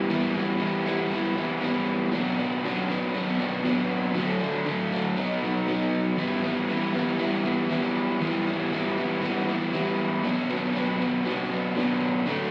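Rock in E minor at 118 BPM, dark and brooding, with a lone crunchy overdriven electric guitar playing picked, double-tracked lines from B2 to E4, up front and touched by slapback echo. Heard as a live gig through the venue's PA, it sits in a lush hall reverb with an RT60 of 2.4 s, moving through Em, Bm, D and B before returning to Em around 6.2 s. This cut from a longer piece runs to 12.5 s.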